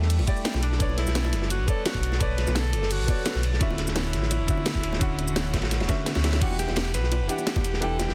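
Dense and heavily limited, this rolling, soulful liquid drum and bass excerpt sets a bright, lightly vibrato alto saxophone melody with digital delay over clear, intimate grand piano accompaniment, a very quiet ethereal pad, a deep sub bass up front, a gritty, saturated breakbeat kit layered with a cracking electronic kit and a knocking kick, and round, low-tuned bongos in the background, with the kick dropping out for a drum fill from 6.1 to 6.4 seconds.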